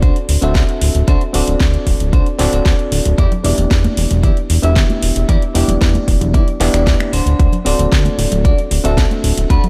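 Nu-disco at 114 BPM with a sleek, groovy feel: a punchy, up-front electronic kick and a house kit of finger snaps, metallic hats and a cracking snare are joined by a fat, detuned sawtooth bass with tube saturation, while a gritty, reedy electric piano pumps through a low-pass filter and dub echo, a clean picked electric guitar riff shimmers with subtle chorus and echo, and bright, close congas join softly in the background at 3.3 s, all over a D7 to Em7 and back to D7 progression in an echo-heavy mix with light reverb.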